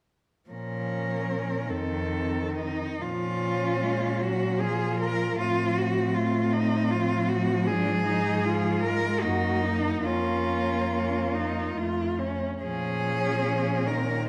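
In a rubato 3/4 that moves between 63 and 80 BPM, this yearning, melancholic classical excerpt in Bb minor is played by four bowed cellos, each with vibrato. A rich, focused cello sings the melody up front, a second cello with soft attack and expressive portamento shapes an inner line, a warm cello supplies the accompaniment with its own sliding portamento, and a smooth, even, close cello holds the bass up front. All four begin together at 0.5 s, a new section opens at 3.0 s, and the harmony settles back on Bb minor at 12.6 s inside a wet recital-hall reverb.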